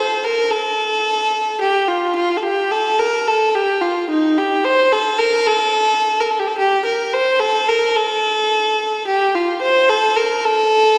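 Moving in free time, this hypnotic, soulful Turkish excerpt features a solo kamancheh playing up front from 0.0 to 11.0 seconds between Eb4 and C5, its clear, biting, earthy tone carried by light vibrato, portamento and an airy bow, all bathed in the wet reverb of a concert hall.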